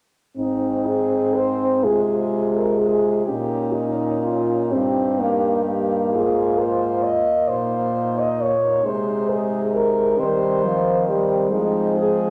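This classical piece for horn quartet is lyrical and tender, a short passage cut from a longer work, moving in a gentle 6/8 with a freely stretched, rubato feel. Four French horns sound together from 0.4 s to 12.3 s. The top horn carries the melody with a clear, smooth tone up front, while a second horn with a soft attack and vintage character sings an inner line in the background. A third horn, warm with light vibrato and a distant, roomy quality, fills out the accompaniment, and the fourth supplies the bass beneath. The harmony moves from Ab through Eb7/Bb and Ab/C before reaching Fm, set in the generous reverb of a recital hall.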